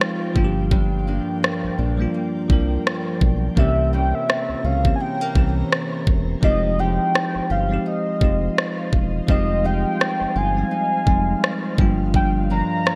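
Late-night and longing, this contemporary R&B excerpt rides a swung groove from a smooth electronic drum kit with a knocking kick and rim click under gated reverb, while a round, deep analog bass joins at 0.4 seconds. A bell-like tine electric piano, a fingerpicked nylon-string guitar with analog chorus, and an ethereal pad with phaser and ensemble chorus fill out the harmony, and a velvety synth lead with vibrato carries the melody from 3.6 seconds. The bright 1980s-style digital production sets the parts in a light reverb.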